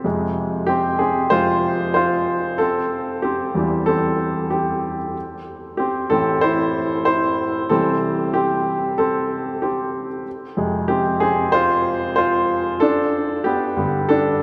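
A clear, polished baby grand piano plays alone from the start, sitting up front in a pop excerpt at 94 BPM in 4/4 with a straight feel in C major. Its part spans E2 to C5 and moves through Fm, C, Am, C, Fm and G, giving the short passage a warm, uplifting mood. A wet cathedral reverb with a long 5.3-second decay surrounds the piano, placing it in the resonant space of a church or concert hall.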